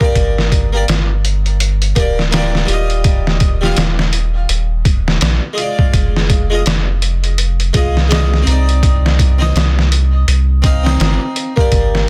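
Hypnotic and brooding, this 12-second trip hop excerpt at 83 BPM swings its 16ths over a Gm, Ebadd9, Fm7, Cmadd9 progression, with a gritty, overdriven sampler-style drum kit of thumpy kick, medium-tuned snare and hi-hat up front beside a deep, round dub sub bass entering at 0.2 seconds, while a brilliant, airy harpsichord sits further back, its plucked tones shimmering through harmonic tremolo and tape echo in a dry, dense, heavily limited mix.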